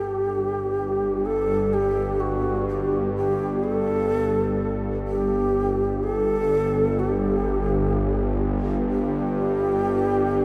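Dark ambient drone at a slow 63 BPM in 4/4, cut from a longer piece, with a cavernous, desolate mood and a tuning reference of A4 = 443 Hz. A long shakuhachi carries the melody between F#4 and A4 across the full 10.4 seconds, its bamboo tone breathy and reedy, close-miked and up front, with a soft attack, vibrato and a tape echo trailing its phrases. Beneath it, a bowed-like drone holds the low register from G1 to G2, a tense, sawtooth, string-like sound built from unison voices and a noise layer. The drone has a slow attack, long sustain and long release, with its own vibrato and built-in reverb, and it also sits up front. Both parts are wrapped in a wet cathedral reverb with a 6.4-second decay, giving the short passage a vast, hollow space.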